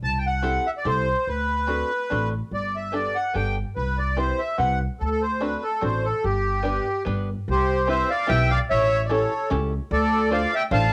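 In a straight 3/4 waltz lilt, this nostalgic, whirling musette fragment pairs a reedy, sweet accordion melody with light tremolo tuning up front and a woody, growly pizzicato upright bass, while a mellow, plunky fingerpicked open-back banjo joins at 0.4 seconds to accompany, both accordion and banjo carrying a cassette tape haze and plate reverb as the tune shifts into a new section at 7.5 seconds within a moderate studio room.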